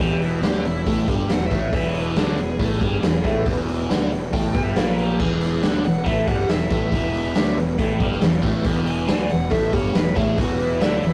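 Biting, double-tracked overdriven guitar anchors this raunchy blues rock and southern rock excerpt, picking a driving riff on E through a phaser and sitting up front at 138 BPM in a straight 4/4. A dark, smooth lead guitar, picked and overdriven, carries a solo as the second line across the full 11.1 seconds. Beneath it, a fuzz-drenched fingered electric bass adds a growly, overdriven low end, while a raw garage drum kit with a punchy kick, medium-tuned snare, hi-hat and crash sits forward with a rolled-off top. A full, clean tonewheel organ holds very quiet sustained chords through a slow rotary speaker with chorus vibrato. The whole band plays in a small room with moderate reverb, captured as a rough rehearsal-room recording with tube saturation.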